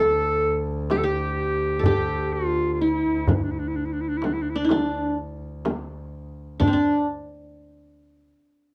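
Moving in a straight 10/8 at 126 BPM in eighths, this longing, soulful Turkish makam ensemble piece in D makam ussak, cut from a longer work, sets a bright, smooth-topped classical clarinet solo up front over a plectrum-plucked qanun second line with bright-edged triple strings and a close, earthy bowed double bass drone with light vibrato. The clay-shelled darbuka, deep and played with soft hands, enters at 0.4 s, and a close, dry frame drum joins at 0.9 s. Moderate studio reverb and worn, warbling cassette tape with pitch drift give the whole an aged, wistful sheen.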